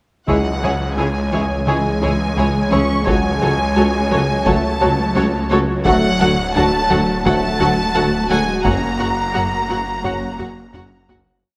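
A big taiko ostinato drives this tense, brooding hybrid orchestral and electronic film cue at 86 BPM in 4/4, where bowed violins with vibrato carry the melody over a second violin line, violas, cellos doubling the tune at the octave, and very quiet double basses, while mellow French horns sound short accented chords, a tuba doubles the bass line, a snarling distorted saw bass growls beneath, a faint warbly lo-fi pluck pulses, and an ethereal phased pad sustains chords from C#m through D to F#, all in a roomy scoring-stage reverb before a fade-out from 8.7 seconds and a drum fill at 10.4 seconds.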